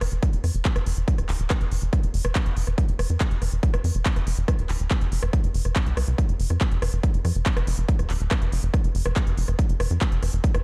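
A dark, dry production with little reverb frames this short cut from a longer psychedelic trance piece, intense and driving at 141 BPM in a straight 4/4. A punchy, layered electronic kick sits up front from 0.2 seconds, re-recorded in a large room with a tape-warm tone, while a big-room dance kit adds crisp hi-hats, handclaps and rim clicks at a lower level. Also up front, a tight sequencer bass blends sawtooth, square and triangle waves into filter-plucked, decaying notes with a fast attack, thickened by tube saturation.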